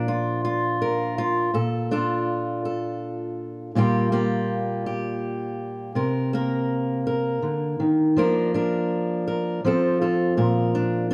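A fingerpicked steel-string acoustic guitar sits up front through the whole 11.1-second excerpt, its warm concert tone ranging from Bb2 to Bb4 as it carries the accompaniment in a folk piece at 82 BPM in 3/4. Behind it, a bright, classical nylon-string guitar plays the melody on Bb4 in the background, sounding only for the first 0.8 seconds before falling away. The piece is in Bb major, and the harmony moves from Bb through Bbmaj7, Gm7/Bb and Cm7 before passing through Bb/F and F to settle back on Bb at 10.4 seconds. The mood is nostalgic yet hopeful, cut from a longer piece. A moderate reverb from a large studio, with a 1.3-second decay, surrounds the guitars, and the production leans dark.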